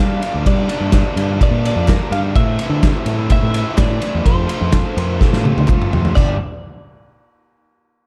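Indie rock at 126 BPM in G dorian, moody and cool, with a dark studio reverb over a short cut from a longer piece that moves through Gm7, Am and F before landing on G5 at 6.2 seconds. A compressed, twangy twelve-string electric guitar with analog delay carries the melody over a biting, double-tracked overdriven guitar riff and a growling, punchy fingered bass with its own overdrive. A loose, up-front drum kit with a pumping room sound, dark cymbals and a punchy kick plays a fill from 5.2 seconds, while very quiet crisp handclaps sit close and dry and a bell-like tine electric piano enters in the background at 4.7 seconds.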